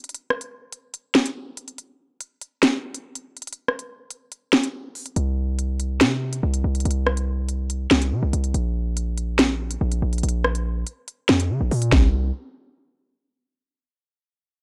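Lightly reverberant and up front, this dark, tense half-time drill cut opens with the electronic drum kit playing alone: a knocking kick, sharp snare, rim click and crisp hi-hats, all roughened by vintage 12-bit sampler grit. At 5.2 seconds a hard-hitting 808-style bass arrives, a punchy, heavy sine tone with a noise layer, fast attack and decaying tail, ranging from Bb1 to Db3. The drums stop at 12.0 seconds, and the bass rings on briefly before the cut ends.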